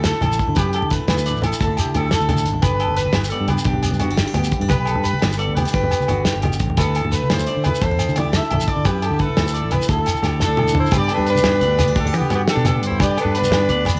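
A punchy horn section carries the sunny melody in this highlife guitar band excerpt at 116 BPM in a straight 12/8 and G major, over clean electric guitar arpeggios, a bright picked acoustic guitar with finger squeak set in the background, a round, fingered electric bass, a tight-kicked soul drum kit with a rolled-off top, grainy shekere, low-tuned congas and ringing agogo bells, while an edgy, forceful tenor saxophone enters with a second line at 10.5 seconds, during a drum fill, and cassette tape and plate reverb lend the horns, guitars and saxophone a homespun vintage glow.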